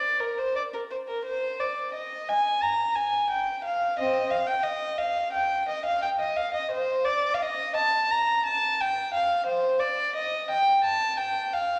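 A single violin carries this short excerpt from a longer piece, a baroque-style suite movement for unaccompanied violin in Eb major. Its tone is dark and woody, bowed by one player with vibrato and set up front, ranging from C4 to Bb5 across the full 11.8 seconds. The tempo sits around 87 BPM in 4/4, though the rubato feel lets the line breathe freely. The mood is flowing and serene, with the solo voice sustaining a calm, unhurried character throughout. A wet recital hall reverb with a 1.9-second decay surrounds the instrument, giving it a resonant, spacious setting.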